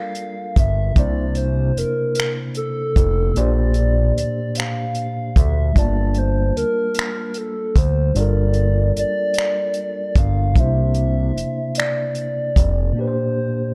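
A slow, straight six-eight R&B groove at 50 BPM in G dorian sets a late-night, yearning mood. A hollow, woody clarinet-like synth lead carries the melody with chorus, phaser and vibrato over a mellow tine electric piano, a fat, detuned analog bass and a soul drum kit of finger snaps, hi-hat and tight kick. The chords move through Gm9, C9 and Bb69 in a dark, small-room production in this fragment of a longer piece.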